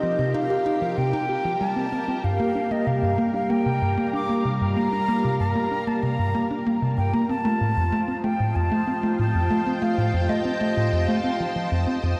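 Ambient, sequencer-driven space music in G minor at 95 BPM, this expansive, cosmic excerpt rides on a tight, punchy sawtooth sequencer bass riff with a plucky filtered attack, set beneath lush, vintage string-machine chords treated with phaser and ensemble chorus. An airy, mellow concert flute carries the melody with vibrato and a touch of delay, while a very quiet, breathy wind-like noise texture drifts in only until 2.2 seconds. The chords move from Cm7 to Gm7 and then F7 at 7.3 seconds, all bathed in a dark hall reverb.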